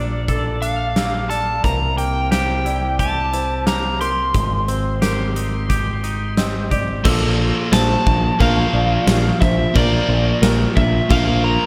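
A dreamy mix soaked in plate reverb gives this cinematic, soaring post-rock excerpt a spacious, glowing sound, moving at 89 BPM in a straight 4/4 in Bb lydian. An overdriven slide guitar, played with fingerpicks and trailed by analog delay, carries the high melody, while a twangy, clean electric guitar plays fingered, delayed arpeggios until 7.1 seconds. Underneath, a growling, punchy fingered bass with overdrive sits up front, and a huge arena drum kit with a natural big-room sound, bright cymbals and a punchy kick drives the pulse. A soft, felt-muted upright piano adds mellow, intimate arpeggios with delay in the background. At 7.0 seconds a biting, picked overdriven guitar riff arrives as the harmony returns to Bbmaj7 after passing through C7 and Abmaj7.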